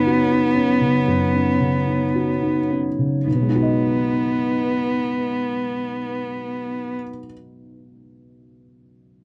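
Neoclassical piano and strings in B major at a rubato 52-60 BPM, this tender, hopeful excerpt opens by slowing down over its first 3.3 seconds as a dark, boxy felt-muted upright piano plays intimate accompaniment up front beside a rich, bowed solo cello singing a second line with vibrato and portamento, while a warbling, lo-fi tape-like pad with chorus holds nostalgic sustained chords in the background, moving from Badd9/F# to B6 in a dry, close 1970s-style studio sound with light reverb until the cello and pad stop at 7.0 seconds and the piano rings on alone to 9.2 seconds.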